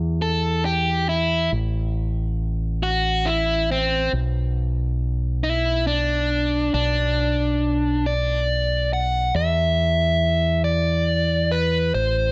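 A slow, straight 6/8 pulse at 46 BPM, counted in dotted quarters, carries this brooding, melancholic post-rock fragment cut from a longer piece. A growling fingered electric bass with overdrive sits low and up front, while a picked, overdriven electric guitar carries the melody through a slapback echo, all in a dry, close sound with a darkened top end. The harmony moves from Emadd11 through a chordless stretch at 1.5 seconds to B minor at 4.1 seconds, then shifts at 9.4 seconds to a rootless Bmadd11 over E.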